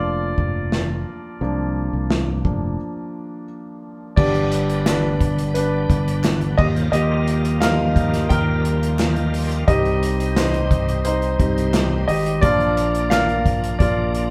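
A straight 4/4 pulse at 87 BPM carries this dramatic, driving piano pop passage, cut from a longer piece. The concert grand leads throughout with a present, polished tone, deep bass, long sustain and audible action noise, sitting up front beside a round, punchy fingered electric bass and a tight, dark acoustic drum kit of kick, medium-tuned snare, hi-hat and crash. After a brief break, the harmony shifts at 4.2 seconds from Bb to G, then moves through Ebadd9 and Cm before returning to Bb. At that same point a bright tonewheel organ enters lower in the mix, holding shouting, lightly overdriven chords with chorus vibrato, key click and a slow rotary speaker. Very quiet, crisp group handclaps join at 4.9 seconds and stop at 13.3, sounding distant as if in a large room. The band plays live together in one room, wrapped in a moderate stone-room reverb.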